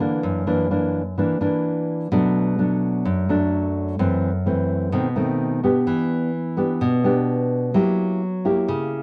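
A dark, thumb-plucked classical nylon-string guitar plays alone and up front through this relaxed, sophisticated bossa nova excerpt at 128 BPM in a straight 4/4, moving through jazzy chords from F#7b13 and Bm7 to Em7 and F#7b9 in a warm production with a moderate studio reverb.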